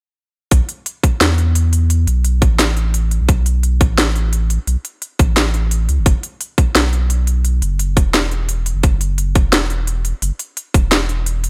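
Heavy and cinematic, this half-time drum and bass excerpt at 173 BPM with a light 16th-note swing pairs a deep, thick saturated sub bass sitting between E1 and E2 with a tight electronic kick that drops out at 10.8 seconds and a layered kit of cracking snare and crisp hats, all up front, tape-tinged and dry overall.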